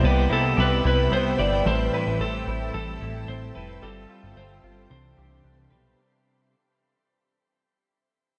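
An up-front lap steel guitar, played with fingerpicks and a slide, carries the melody through digital delay in this short dream pop cut from a longer piece. Its clean, warm tone floats over a dreamy, drifting bed in a straight 4/4, and it drops out at 5.7 seconds. A compressed, picked electric guitar adds accompaniment through harmonic tremolo and ensemble chorus. A bright, hollow-body semi-hollow guitar sits in the background with arpeggios in lush chorus and delay, and it rings on until 6.5 seconds. Around them, an ethereal, airy pad of detuned unison voices holds slow-attack chords, while a punchy, funky analog bass with a fast attack, a filter pluck and a moving notch stays mellow and forward. The harmony moves from Cmaj7 through Am7 and G9sus4 to Cmaj9, all under a moderate shimmer reverb in a dark production, and the whole passage fades out across its length.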